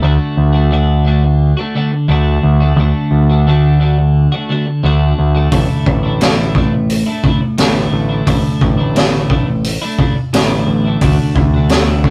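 Quiet-loud alternative rock at 87 BPM in a straight 4/4, bittersweet and anthemic, this short cut moves from D to Asus4 and back to D. A bright, twangy twelve-string electric guitar plays clean picked arpeggios with a warbly pitch drift, over a growling, overdriven picked bass, both up front. At 5.5 seconds a raw garage drum kit enters with a punchy kick, high-tuned snare and hi-hat, its gritty, rolled-off sound sitting in a small room under light reverb and the tube saturation of a rough rehearsal-room recording.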